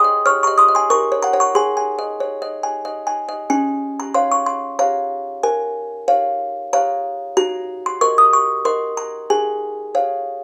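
A light reverb and the feel of a single room surround this short piece, lifted from a longer classical lullaby. A solo music box plays it, placed up front, with a delicate, tinkling, plucked tone and a bright, mid-forward character that suggests a large box. Its notes span from Db4 up to F6 at an unhurried 93 BPM in a straight 3/4 lilt, and the mood is innocent and dreamy. The harmony sits in Db major: an opening phrase moves between Ab and Gb/Bb. At 3.5 seconds a second phrase settles on Db, then passes through Bbm7 and Ebm/Gb before resting on Db/Ab as the clip closes at 10.4 seconds.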